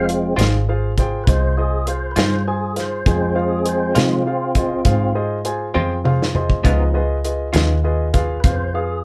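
A fat, lightly overdriven tonewheel organ opens this brooding, smoky slow blues in F minor. It takes the lead with sustained chords through a slow rotary speaker, with chorus vibrato and audible key click, while a dark, round, foam-muted electric bass sits up front beneath it. The band moves at 67 BPM in 12/8 with a straight feel, joined almost at once by a soul drum kit with a tight kick, medium-tuned snare and rolled-off top. A clear baby grand piano with long sustain and a clean, picked, compressed electric guitar with tremolo fill out the accompaniment. The whole group sounds like it is playing live together in a small room with moderate ambience, and a drum fill from 5.7 to 6.6 seconds lands on the change from F minor to Db7 in this clip cut from a longer piece.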